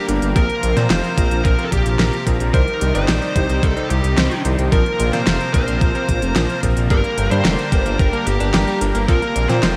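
Nostalgic and driving, this short synthwave passage from a longer piece moves in a straight four with a bright, 1980s-style digital sheen and a lush hall reverb. A smooth, dark overdriven lead guitar carries the melody with delay, floating over a thick, warbling unison pad whose sustained chords shimmer with chorus and pump through sidechain. Underneath, a deep, rumbling detuned saw bass sits up front, joined by an overdriven, thumpy electronic kick that sounds re-recorded in a large room, plus a produced pop kit with a fat snare and crisp hi-hats. A clangy electric grand piano adds delayed stabs in the background, and from 6.9 seconds a very quiet, clean twelve-string electric guitar slips in with picked arpeggios. The harmony cycles through Bbsus2, Cm and Gm.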